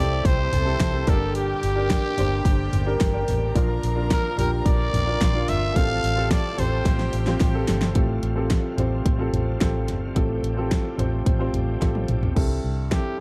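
A raspy, growling trumpet opens this hopeful piano-driven pop piece at 109 BPM in a straight 4/4, joined at once by a clear, woody upright piano that is slightly detuned, a round, foam-muted fingered electric bass, and a soft-attacked violin section floating sul tasto in the background. A very quiet tonewheel organ holds sustained chords through a rotary speaker with chorus vibrato, key click and light overdrive. The drum kit enters at 0.2 seconds, a layered, electronic-sounding pop kit with a punchy kick and fat snare, re-recorded in a small room and placed up front. The chords move from C6 through Gm and Bb to Fadd9/A, and the trumpet's gritty pop-style solo line with light vibrato drops out at 7.1 seconds as a drum fill carries into a second section resting on Fadd9. Another fill leads back to C6, where the trumpet returns briefly at 12.9 seconds, all set in a dark, warm digital ambience in a passage cut from a longer piece.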